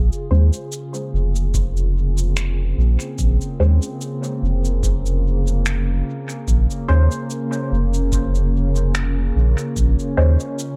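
A warbling, lo-fi pad and a deep, round sub bass open this hazy, spacious ambient dub piece in Bb minor, settling on a single Bbm9 chord at a slow 73 BPM with a light sixteenth-note swing. The detuned pad holds sustained chords with a slow attack and long release, its nostalgic, mellow tone colored by chorus, tremolo and its own reverb, while the soft sub bass sits up front and carries the low end. Electronic cabasa and finger snaps, tape-warm and quiet, trail off into dub echo, and a muted, dark chord stab with a filter pluck and moving notch decays through phaser and more dub echo. A very quiet analog kick drum, recorded in a large room, arrives at 1.5 seconds to add a faint pulse beneath the haze. The echo-heavy mix gives this short cut from a longer piece a drifting, digital sense of space.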